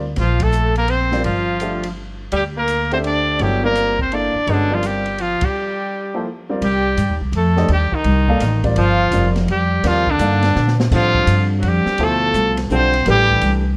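Close, detailed microphones and light reverb frame this searching, hypnotic modal jazz excerpt in 3/4 at 168 BPM, swung on the eighths, moving from G dorian over Gm9 to C dorian at 6.6 s, with Cm11 and later Dm11 chords. A vibrato-laced, vintage-toned trumpet carries the melody up front, while a soft-attacked alto saxophone with scooped notes traces a second line beneath it, and a woody pizzicato upright bass on steel strings sits prominently under an open, long-sustaining baby grand piano's accompaniment. An acoustic drum kit with dark cymbals, a high-tuned snare and a boomy kick plays in a small room with a rolled-off top, joining the band accents at 0.3 and 5.4 s before a break at 5.5 s and a short fill at 10.6 s.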